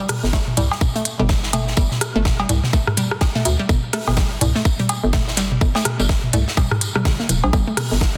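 A 125 BPM pulse in 4/4 drives this cool, clinical minimal techno clip, with a 60% swing on the 16ths. A tight, up-front electronic kick anchors the groove, layered with crisp electronic hats, and both carry a tape-warm, large-room character. A booming analog drum machine adds cowbell, rim click and toms with tape echo, while a big rock kit recorded in a bright stone room contributes high-passed hi-hat, a medium-tuned snare and tambourine, its hats and percussion pumping with sidechain compression. Underneath, a punchy, knocking FM bass bounces between D1 and D2 with a fast attack and decay, pumping in the mix. Above it, a hollow, detuned square-wave pluck enters at 0.3 seconds, moving between D3 and Bb3 with a short, filtered decay, a moving notch, chorus and delay. The piece sits in G minor over a G5 chord, tuned to A4 = 438 Hz, with light small-room reverb and a dense, heavily limited modern master.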